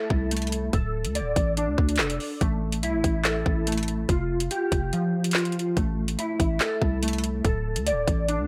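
This drill hip hop excerpt opens with a mellow electric guitar playing clean, fingered arpeggios, its dark tone thickened by ensemble chorus and delay. At 0.1 seconds a growling 808-style bass and an electronic drill kit join. The music moves at 143 BPM in a half-time feel in A minor, with a menacing, ominous mood. The bass is buzzy and sine-based, with a fast attack and a decaying tail. The kit pairs a hard-clipped kick with a woody snare, metallic hi-hats and handclaps in a tape-touched blend. The harmony cycles through Am, D5, A5 and Fsus2, and the kick drops out between 4.9 and 5.8 seconds, all in a close, dry, up-front mix.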